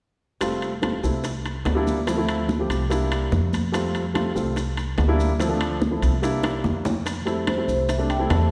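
Afro-Cuban jazz at 144 BPM in F major, this lively, sunny excerpt is cut from a longer piece and moves through a bright cycle of Fadd9, C7 and Dm7 before settling on Fmaj9. A warm concert grand piano with deep bass and short sustain sits up front in the accompaniment, paired with a woody, pizzicato upright bass strung with steel. Beneath them, a percussion bed of very quiet, thick-skinned congas, round low-tuned bongos played with soft hands in the background, ringing metal-shell timbales and grainy, mellow maracas keeps the groove moving. A drum fill from 6.4 to 7.1 seconds leads into a new section, where a vibraphone played with soft mallets enters at 7.5 seconds with a metallic, airy melody and medium motor vibrato. The whole performance sits in a moderate reverb, giving it the open resonance of a church or concert hall.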